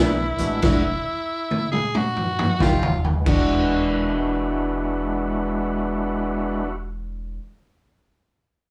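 Recorded live in one room with moderate studio reverb, this swaggering, rollicking electric blues shuffle is cut from a longer piece. A raspy, growling tenor saxophone carries the melody up front for the first 3.0 seconds, over a dark, clean, fingered electric guitar riff and thumpy pizzicato upright bass on gut strings, while a thick tonewheel organ with slow rotary speaker and light overdrive plays accompaniment. A saturated, boomy garage drum kit with a gritty, rolled-off top plays a fill from 0.6 to 3.3 seconds.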